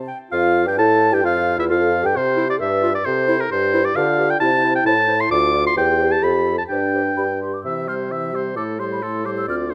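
A quick 2/4 pulse at 131 BPM moves with a flexible, rubato feel in this spirited, cheerful classical-period movement for wind quintet, an excerpt cut from a longer piece. The mellow bassoon opens the texture at 0.0 s with the bass line, sitting up front with light vibrato and a soft attack. The concert flute carries the melody from 0.3 s, its pure, hollow tone with vibrato and lifted highs placed in the background. The oboe joins at the same moment on a second line, up front and warm with a light vibrato. The clarinet and the dark, smooth-topped French horn fill in the accompaniment, the horn entering at 0.8 s. The music begins in F major and settles into C major, captured with close, detailed microphones and a light reverb.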